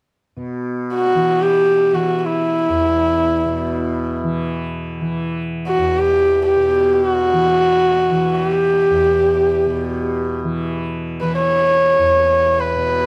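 A dry, close recording with a 1970s studio character opens this short, meditative fragment of Indian classical music, cut from a longer piece. A softly plucked tanpura drone, buzzing and shimmering low in the mix, begins at 0.4 seconds. At 0.9 seconds a single bowed sarangi enters up front, its dark, nasal and slightly boxy voice gliding between notes with light vibrato, an airy bow and ringing sympathetic strings for an intimate, introspective feel.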